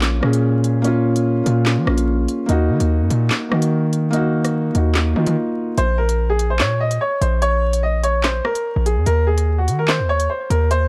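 A felt-muted upright piano opens this dark, menacing drill excerpt, its soft, mellow playing sitting intimately up front in Bb minor over a hard-hitting 808-style bass and an electronic drum kit. The tempo is 146 BPM in a half-time feel, with the drums bringing a woody snare, crisp hi-hats, handclaps and rim clicks. The 808 is heavy and saturated, a sine tone with a noise layer, a fast attack and a decaying tail, pushed to the front of the mix. After a short break from 5.4 to 5.8 seconds, the muted piano gives way to a bright upright piano carrying the melody, its brilliant, polished tone replacing the earlier muted sound. The harmony moves between Bb minor and Eb minor before landing on an Eb5 chord near the end, all set in a small-room ambience with a dark, warm production and vinyl crackle.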